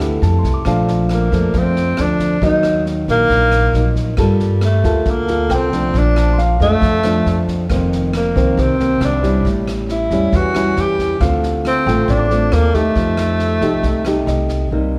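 A breathy, whispered tenor saxophone carries the melody up front, with subtone, vibrato and scooped notes that give it an intimate jazz feel, in this sophisticated, breezy bossa nova in Bb major at 137 BPM, cut from a longer piece. Thumb-plucked nylon-string guitar sits close by with audible finger squeak, while a woody pizzicato upright bass anchors the harmony through chords such as Bbmaj7, Gm9, A7 and Dm7. An airy drum kit adds rim clicks, snare and a punchy kick, and a warm grand piano with long sustain stays in the background, all set in a moderate recital-hall reverb.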